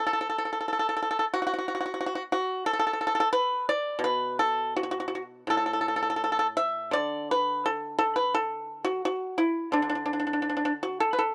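This is a short excerpt of Chinese traditional music for solo plucked strings, with a flowing, elegant mood. A lone pipa carries the whole passage from 0.0 to 11.3 seconds, played with fingerpicks and ranging from A2 up to E5. The tempo sits between 80 and 91 BPM in 2/4, but the feel is rubato, so the pulse breathes freely, and the music rests in a D gong mode. The pipa's tone is acoustic and warm, with a percussive bite that comes through clearly because the instrument sits up front in the mix. The close, dry studio sound recalls a 1970s-style recording, keeping the attention fixed on the single instrument.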